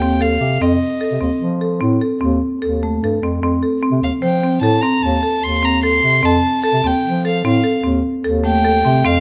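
Light reverb lends a little space to this hopeful, playful fragment of contemporary chamber music in 7/4 at 149 BPM, where a close, rich violin carries the melody with light vibrato and an airy sul tasto bow over woody hard-mallet marimba arpeggios and a dark bass clarinet bass line full of subtone and scooped notes, the three parts sitting up front on a single F7 chord in F mixolydian.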